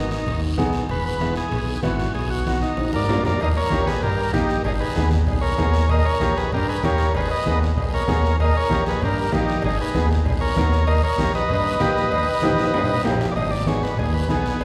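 Awash in a long church reverb, this fiery, passionate cumbia excerpt at 193 BPM sets a buzzy, vibrato-tinged vintage combo organ melody up front over a smooth, gliding sawtooth synth bass with portamento, a woody upright piano with audible action noise, raspy guiro, and distant ringing timbales and cowbell beside bright, hard-handed congas in the background, with drum fills at 2.8 and 12.4 seconds before the organ takes a solo at 13.4 seconds.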